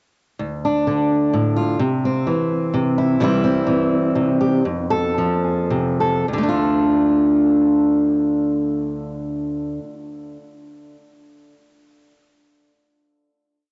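Wistful and stirring, this short indie folk piece in D minor and 3/4 time features a lone fingerpicked steel-string acoustic guitar, up front and warm, with an alternating-thumb fingerstyle running from D2 to A4, colored by cassette tape and analog delay. Moving between 102 and 128 BPM, it slows from 3.2 to 6.3 seconds through a breakdown over Dm, C and F, then settles on a final Dm chord at 6.3 seconds, and the guitar stops at 10.0 seconds. The home cassette recording sits in a wet small room with dulled highs.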